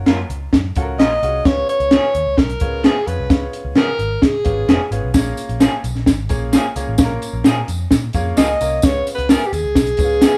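A straight 4/4 groove from a compact cocktail drum kit with a punchy kick and high-tuned snare sits up front, anchored by a round, foam-muted picked electric bass in this uplifting, uptempo 1960s-style soul excerpt played live in one room. A bright, woody upright piano fills out the accompaniment while a slightly broken-up, twangy electric guitar adds lo-fi stabs bathed in spring reverb. A clear, present alto saxophone carries the melody from 1.0 to 4.9 seconds and returns at 8.4 seconds, with a jingly, close and dry tambourine joining at 5.1 seconds.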